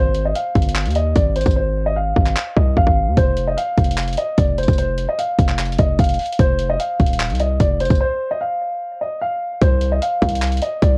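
Brooding and menacing, this short trap excerpt at 149 BPM in a half-time feel sets a dark, boxy grand piano melody (C5 to F5), filtered and tape-worn, over a punchy, heavy 808 bass with a sine body and noise layer (Eb1 to Eb2) and a gritty, compressed sampler-style kit of thumpy kick, handclaps and hi-hat, whose hats drop out from 1.6 to 3.2 seconds before a break at 8.0 seconds, all in a cassette home-recording ambience.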